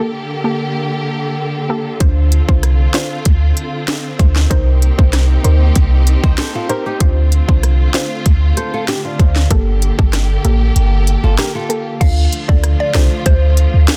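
Tough and hypnotic, this dancehall excerpt opens on a lush, bowed string section with vibrato and a soft, round pluck pulsing under chorus and sidechain pumping. At 2.0 seconds, a deep, boomy 808-style bass and a tight, up-front electronic drum kit with sharp snare, crisp hats and rim clicks arrive, and from 6.2 seconds a fingerpicked flamenco guitar adds arpeggios with audible finger squeak. The kick drops out from 10.8 seconds until 12.0 seconds, when a woody, mallet-like synth pluck takes the melody through chorus, phaser and delay, all within a dry, dense, heavily limited mix.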